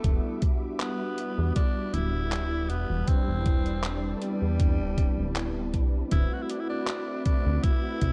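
A faded, nostalgic vaporwave fragment at 79 BPM with a light 16th-note swing opens all at once: a thumpy, up-front electronic kick and a detuned 8-bit drum machine's handclaps and hi-hat, both tape-softened and re-recorded in a small room, sit under a glossy, chorused synth bass. Above them a raspy, growling tenor saxophone carries the melody through vintage 12-bit sampler grit and tape echo, while round, brassy synth brass with lush chorus and vibrato supports it and a silky string machine holds soft chords in the background. The harmony moves from Em7 to Am11/E and settles on D13 at 6.1 seconds, all wrapped in a dark production with light reverb.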